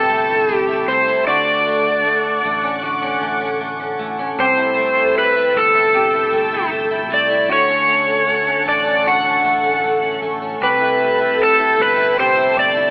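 Heard through a telephone-like filter and bathed in a lush hall reverb, this ethereal, dreamy 77 BPM dream pop excerpt places an up-front overdriven slide guitar melody with tape echo over a clean, scooped electric guitar's chorused, echoing arpeggios, mellow, vintage organ-like string chords with phaser and ensemble chorus, and a growly fretless bass in the background, as the harmony moves between C6 and Dmaj7.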